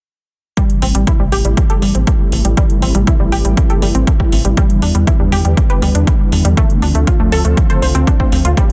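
Dreamy and bittersweet, this progressive house excerpt in A minor moves at 120 BPM in a straight 4/4, with a punchy, overdriven electronic kick up front and metallic, overdriven hi-hats driving beneath a lush, detuned supersaw pad that carries sustained Am7, Em7 and Dm7 chords through a phaser, a filter sweep and sidechain pumping, while a unison pluck spins lush, punchy arpeggios through digital delay and a tight sawtooth-and-square sequencer bass from 0.8 seconds adds a mellow, driving pulse, all in a dry, dense, heavily limited modern master.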